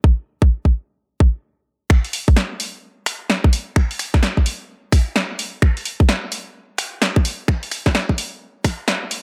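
An overdriven, tight electronic kick drum sits up front and opens this moody, soulful UK garage excerpt at 129 BPM in 4/4, its layered thump carrying a swung 16th-note feel. At 1.9 seconds a punchy, tape-warm analog drum machine joins with finger snaps, hi-hat and a punchy snare, both snare and hats thinned by a high-pass filter, as a filter sweep drives a build-up to the end. The kick drops out at 8.8 seconds, leaving the drum machine briefly in light reverb and a digital ambience.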